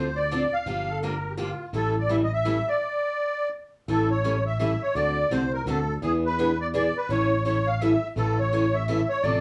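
Virtuosic and bittersweet, this fragment of acoustic string swing in the gypsy-jazz tradition moves in a swung three-beat metre. A reedy musette accordion carries the melody up front, its shimmering, vintage tone sounding slightly band-limited. A second musette accordion, boxier and softer in the mix, adds a brief counter-line at 0.9 s. Beneath them, a bright picked steel-string acoustic guitar supplies the accompaniment with audible finger squeak, while a growly, direct fretless electric bass sustains the low end. The harmony runs through minor seventh and dominant seventh changes, broken by a stop from 2.8 s to 3.9 s before the second section resumes on dominant chords and settles on A. The whole group sounds as if heard from further back in a small, wet room.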